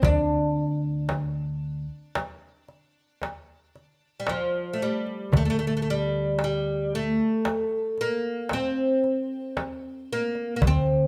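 Arabic maqam ensemble music in a melancholic, hypnotic 10/8, heard as a short cut from a longer piece, with the group playing live together in a large studio whose moderate reverb gives the sound some air. Up front, a fretless, double-strung oud carries the plectrum-plucked melody in a woody, warm tone, while an upright bass sits beneath it on a dark, low pizzicato line. A crisp, small metal-shelled darbuka, close and dry, and a deep, close frame drum played with soft hands keep the percussion going throughout the roughly 11 seconds.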